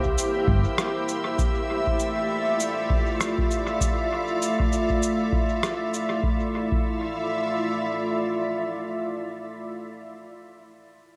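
An organ-like pad opens this meditative, hazy ambient dub fragment, its pure, slightly detuned tone sitting bright and up front with a slow attack, ensemble chorus and its own reverb, as the chords move from C7 to Dmadd9. Underneath, a round, dark hollow-body electric bass sounds only briefly, its tube-saturated note over by 0.6 s. A dry, deep analog kick drum comes in almost at once and carries a lightly swung groove until 6.9 s. A muffled, pitched-down cabasa and rim click, compressed and overdriven, flickers through dub echo at a lower level in the background. After the drums stop, the evolving pad hangs alone on its long release until 9.4 s, all of it set in a moderate spring reverb within an echo-heavy mix.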